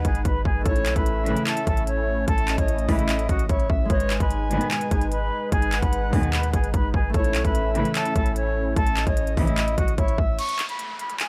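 Eerie and dark, this brief half-time trap excerpt at 148 BPM sets a distant, vibrato-laden silver flute melody over a breathy, warbling synth lead with chorus, ringing fingerpicked harp, a smooth detuned sawtooth pad, woody bowed string stabs, a deep boomy sine 808 bass and an up-front trap kit with a hard-clipped kick, crisp hats, handclaps and crash, moving between G#m and A in a dry, gritty mix before a downlifter takes over at 10.4 seconds beneath the closing flute and drums.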